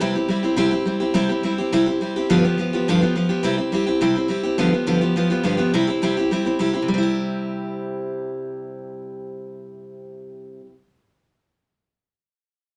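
Rock with a rowdy, upbeat feel, carried entirely by a single picked steel-string acoustic guitar that plays alone from 0.0 to 10.8 seconds. The dreadnought tone is bright and full-bodied, sitting up front in a moderate club reverb, while the harmony moves between C and G7. Cut from a longer piece, the passage shifts through three short sections, with new ones arriving at 4.6 and 6.9 seconds.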